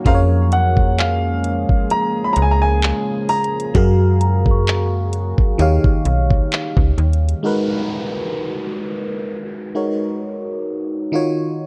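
A dry, worn cassette-tape sound with warbly pitch drift frames this late-night, sensual contemporary R&B excerpt at 65 BPM in G# dorian, where a knocking electronic kit with metallic hats and handclaps and a snappy, metallic slap-like FM bass sit up front beneath a glassy, bell-like FM electric piano with chorus and phaser, a deep, moody pumping pad with chorus and reverb, a clear, intimate grand piano melody with delay, and a delicate celesta in the background, before the drums, bass and pad stop at 7.4 seconds and an electronic downlifter sweeps in under the electric piano until 11.7 seconds.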